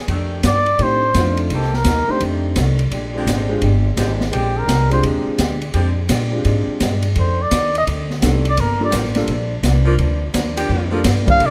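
A swung 4/4 pulse at 170 BPM drives this energetic, joyful big band jazz passage, with an open jazz drum kit playing hi-hat, ride, snare and kick under dark cymbals and a boomy bass drum. The upright bass sits up front, woody and growly on plucked steel strings, while an intimate grand piano with audible action noise and a dark, boxy picked acoustic guitar in the background fill out the accompaniment over harmony built around F13, Cm7, Bb13 and Gm7. A muted trumpet carries the solo melody up front in short phrases from 0.5 seconds, its cup-muted tone soft and veiled with vibrato, scooped notes and a smooth top. A warm saxophone section holds sustained chords with light vibrato, dropping out at 5.9 seconds and returning at 8.9 seconds. A moderate large studio reverb gives the ensemble a roomy sense of space.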